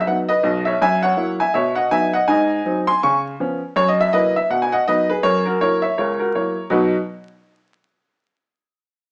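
Exuberant and swinging, this stride piano jazz has a single upright piano carrying everything from the deep bass to the bright top, its tone clear, woody and vintage with short sustain and an up-front presence. The harmony circles busily through dominant sevenths back to home, while a wet studio reverb, vinyl crackle and small-speaker sound lend an old-record character. The piano stops at 7.0 seconds, before the cut from a longer piece ends.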